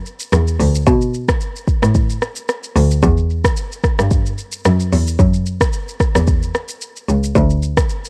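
A dry home cassette recording captures this short, sunny afrobeats fragment, its joyful groove swung lightly on the sixteenths. An electronic, produced afro-pop drum kit with a tape-tinged sound sits up front, its deep kick, smooth hi-hats, rim clicks and shaker running the length of the piece. Carrying the bass line is a single bowed cello with a nasal, reedy gut-string tone and light vibrato in a period style, moving between C#2 and B2 from 0.3 s to 7.7 s.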